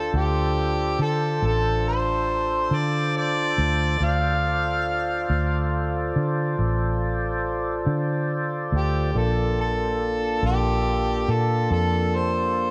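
An overdriven harmonica carries the solo melody in this brooding, mournful slow blues excerpt in D minor, its soft-attack, vibrato-laden tone sounding distant and jazz-inflected. A fat, clean tonewheel organ holds sustained chords through a slow rotary speaker, while a dark, round, foam-muted electric bass adds punchy low end at 47 BPM in 12/8. The harmony rests on Dm7 before shifting to Bbmaj7 at 9.1 seconds, all bathed in a dreamy cathedral reverb.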